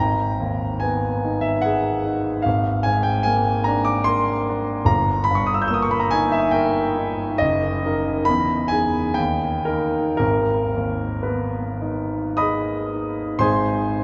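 A romantic classical nocturne for solo piano, this melancholic, wistful passage in G# minor unfolds in 3/4 at a slow, rubato pace of roughly 51 to 75 BPM. A clear concert grand piano carries the whole fragment from 0.0 to 14.0 seconds, sitting up front with a natural tone, deep bass and long sustain across a range from F#1 to G6. The harmony moves from G#m through A#7/G# and D#/G to D#m/F# and Emaj7, passes through an unharmonised moment around 9.2 seconds, returns to G#m and comes to rest on Ab at 13.4 seconds. The instrument is bathed in a wet cathedral reverb with an RT60 of 6.3 seconds, placing it in a vast, echoing space where each note lingers long after it is struck. Cut from a longer piece, the fragment holds a single section of yearning reflection.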